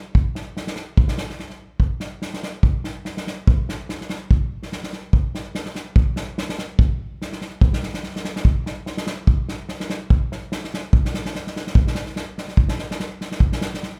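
An up-front acoustic drum kit played with bundle sticks drives this fiery, virtuosic Balkan folk excerpt at 145 BPM in 2/4 with a light 16th-note swing, its punchy kick and medium-tuned snare ringing in a small room with light reverb from 0.1 to 13.9 seconds as the music moves into a new section at 11.7 seconds.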